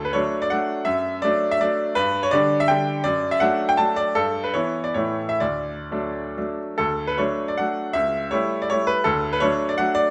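A baby grand piano sits up front in a moderate recital hall, its tone bright and natural with a long sustain carried by the room's reverb. This is a romantic classical dance in triple time, graceful and rustic in mood, cut from a longer piece. The solo piano plays throughout, reaching from low C#2 up to A5, and shapes its dotted rhythms with a supple rubato. The opening phrase moves from D through D/F#, G5 and Em/G to A before settling on D near 5.4 seconds. At 6.8 seconds the same phrase returns, this time turning through A7/C# and closing on D at 9.1 seconds, its brilliant upper notes ringing into the hall.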